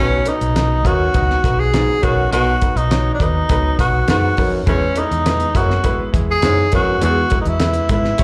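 A straight 4/4 groove at 102 BPM drives this danceable slice of uptempo 1960s-style soul in B major. A cloth-damped, thuddy drum kit with a fat snare and tight kick enters at 0.3 s beneath a dark, round, foam-muted fingered electric bass. A breathy, whispered tenor saxophone carries the melody up front with vibrato and scooped notes, while a smooth-topped baritone saxophone plays a low riff until 7.3 s and a woody, slightly detuned upright piano supplies the accompaniment, the two horns and piano each touched with slapback echo; the chords move from B to E at 4.7 s, and the band sounds like a live club gig heard through the venue's PA, with light reverb and small-room ambience.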